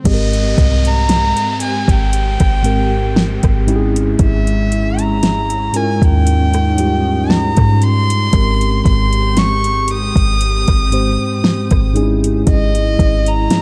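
A mellow tine electric piano and an electronic swell and downlifter open this dreamy, smooth contemporary R&B excerpt in Ab major at a slow 58 BPM with a light sixteenth-note swing, moving through Abmaj7, Dbm/Ab and Eb7sus4. A close, intimate violin with light vibrato and an airy bow carries the melody through a delay, over a deep, round 808-style bass and a produced drum kit whose soft kick, fat snare, metallic hats, rim click and crash are given an overdriven edge. From 0.5 seconds a glassy, warbling FM pad sits in the background with chorus, reverb and sidechain pumping, while the effects fall away at 8.3 seconds, all within a dark digital ambience.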